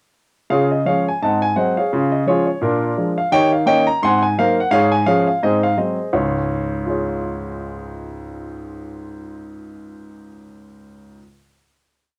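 A warm grand piano opens this short, complete stride jazz piece at 0.5 seconds, carrying a tune above a stride bass at a swinging 170 BPM in 4/4 and D-flat major. The mood is playful and exuberant, with the melody riding over a bright turn of chords that moves from Db through Ab7, Bb7, Eb7 and Ab9 before settling home. The piano sounds present and polished, placed up front, with a short sustain and the soft grain of cassette tape. After about six seconds of lively stride, a final Db chord arrives at 6.1 seconds, and the piano's sound ends at 11.2 seconds. A moderate studio reverb surrounds the instrument, and the home cassette recording gives the whole piece an intimate, homespun character.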